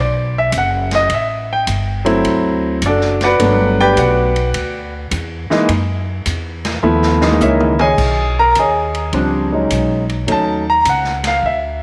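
Bathed in a moderate spring reverb, this warm, sophisticated jazz piano trio excerpt swings at 105 BPM, with an up-front grand piano carrying a solo melody through a slapback echo, a woody pizzicato upright bass anchoring the low end, and a distant, roomy big-band drum kit with a punchy kick and rolled-off top joining at 0.5 s, adding a fill from 6.8 s before the harmony settles into B major at 8.0 s.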